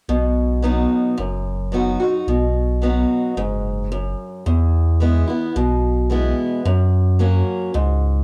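Nostalgic and down-home, this short country excerpt at 110 BPM in B major moves from B to E to F# as a bright, boxy picked acoustic archtop guitar with audible finger squeak and a cassette-tape tint plays up front alongside a deep, thick saturated sub bass with a fast attack and sustained tone, all set in a small room with light reverb that gives it a homespun cassette character.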